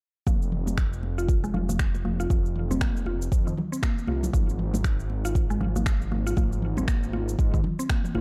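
Swung sixteenths at 118 BPM in 4/4 drive this warm, earthy afro house excerpt in F minor: a deep, up-front electronic kick and a produced afro-pop kit of finger snaps, shaker and toms sit over soft-handed, high-tuned congas in the background, while a rumbling, detuned saw bass pumps with tube saturation beneath woody, round mallet-like synth pluck arpeggios carrying chorus, tape echo and a filter sweep, in a dark production built on an F5 chord until 4.3 seconds.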